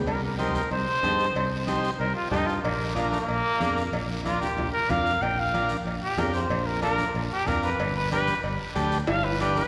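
A breathy, whispered trumpet with vibrato takes an intimate, up-front solo in this driving, passionate cumbia at 186 BPM in C dorian, moving over Cm, Bb and G chords and carried by a fingered electric bass, a buzzy, overdriven vintage combo organ, a raspy guiro, bright, hard-handed congas and ringing cowbell and timbales in the background, set in a wet church reverb with a drum fill at 9.1 s.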